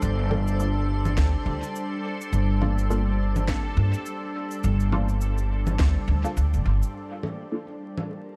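A pizzicato upright bass with gut strings sits up front, thumpy and dark, anchoring this deep, meditative ambient dub fragment at 104 BPM in G minor, with a lightly swung 16th feel over a sustained Gm9 chord. Around it, a pure, organ-like pad holds calm chords with ensemble chorus and reverb, and a bright, bubbling, resonant stepped-filter texture adds chorus and reverb of its own. Muted, mellow dub chord stabs, phased, chorused and gritty with 12-bit sampler character, drift in the background through dub echo. Electronic cabasa, congas and a woody, tape-toned snare play under echo, joined by an overdriven deep electronic kick from 1.2 to 5.9 seconds, all beneath vinyl crackle before the bass drops away at 6.8 seconds.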